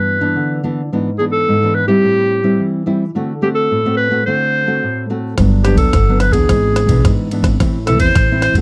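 A clear, forceful clarinet carries the melody in a jazz style with light vibrato, over warm, fingerpicked nylon-string guitar with old strings, in this joyful, playful samba and choro excerpt in G major at 108 BPM. At 5.4 seconds a woody pizzicato upright bass and a gritty, compressed, pitched-up jungle sampler-style drum kit join in, the kit bringing a thumpy kick, ride cymbal and rim click. The whole recording has a dry, close 1970s-style studio sound with little reverb.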